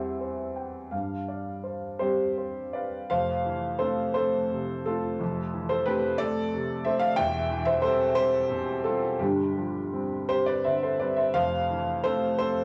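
A clear, worn baby grand piano plays solo and up front with an open tone and cassette-tape character, carrying a tender, intimate neoclassical minimalist piece in a rubato 6/8 at roughly 54-61 BPM. It moves from C/E and G7sus4 into a second section at 3.1 s built on Fmaj7, Cmaj7/E and G7sus4, ranging from E1 to G5 in a small home room with light reverb, before this 12.6-second passage, cut from a longer piece, ends.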